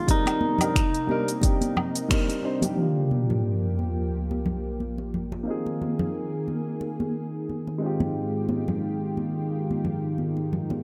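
A lush, thick unison pad with chorus sustains warbling chords through this smooth sunset chillout excerpt at 89 BPM with a gentle 16th-note swing, joined by a dark, mellow grand piano with tape echo and an opening filter sweep, ringing high-tuned congas played with soft hands, a twangy clean electric guitar melody with tape echo, a deep layered electronic kick, a tape-warm R&B kit of finger snaps, filtered hi-hat, shaker and woodblock, and a barely audible round fingered bass; the guitar, kick, kit and bass fall away by 2.7 s before an up-front sub drop hits at 2.8 s, the chords moving from Cm7 through Gm7 and Bb7sus4 to Fm9/Ab in a recital hall reverb.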